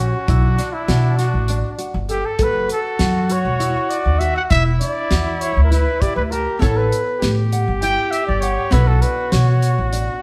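A breathy, whispered trumpet solo sits up front over a warm flugelhorn second line, thumb-plucked nylon-string guitar arpeggios and a woody, thumpy pizzicato upright bass, with a damped 70s drum kit's fat snare and tight kick arriving at 0.3 s and a dark, clean archtop guitar adding background accompaniment from 6.6 s, giving this tense, brooding progressive instrumental in 7/8 at 199 BPM (eighths) the feel of a band playing live in a stone room with moderate reverb.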